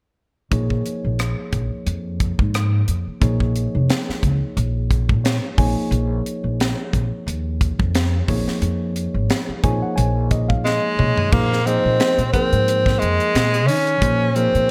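A bright, 1980s-style digital sheen and a moderate plate reverb with a touch of small-room ambience frame this funky, intense slice of electric jazz fusion, cut from a longer piece. At 89 BPM in 4/4 with a light sixteenth-note swing in Bb minor, a crisp, polished drum kit sits up front with a high-tuned snare, punchy kick, hi-hat, rim clicks, toms and crash cymbal, all dressed in gated reverb. A woody, growly upright bass, played pizzicato, anchors the low end, while a clean tine electric piano through a combo amp, colored by a phaser, lays down chords moving from Bbm7 through Db69/F and Absus4/Bb, adding fills around 4.9 seconds and again leading into the change. A drum fill at 10.7 seconds sets up a new section, and an edgy, forceful tenor saxophone enters at 10.6 seconds with a vibrato-laden jazz solo, present and punchy over Bbsus2 before resolving toward Dbmaj13.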